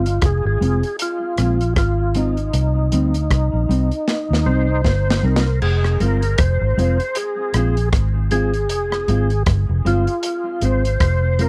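Roots reggae with a serious, meditative mood, this short passage cut from a longer piece moves at an unhurried pace with a lightly swung sixteenth-note feel over chords that shift from Fm to Cm and back to Fm. A percussive tonewheel organ carries the melody up front, its full, lightly overdriven tone colored by chorus vibrato, a slow rotary speaker and dub echo. Beneath it, a mellow electric guitar supplies dark, clean, compressed accompaniment with its own dub echo, while a vintage muted fingered electric bass sits prominently with a round, foam-muted sound. A crunchy breakbeat drum kit enters at 0.1 seconds with kick, rim click, snare, hi-hat and dark crash cymbal, its gritty, saturated character and rolled-off top adding grain, and it plays a fill from 4.1 to 5.6 seconds leading into the second section. The whole recording is dry and close, in the manner of a 1970s studio session.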